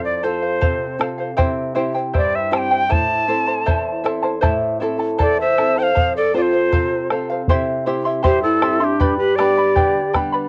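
Festive yet wistful, this Andean folk excerpt moves at 79 BPM in a straight 2/4 in A minor, its harmony cycling through F, C and A minor before turning to G. A bright, airy cane quena sits up front with the melody, its end-blown tone shaded by vibrato and a soft attack. Beneath it, a shimmering charango with double strings, some doubled at the octave, is fingerpicked prominently alongside a small nylon-string guitar, both carrying a cassette-tape hue. The round, close bombo enters at 0.6 s, and at 5.2 s a reedy bamboo pan flute adds a second line with a breathy chiff and vibrato, also colored by tape. Light reverb frames the homely cassette recording.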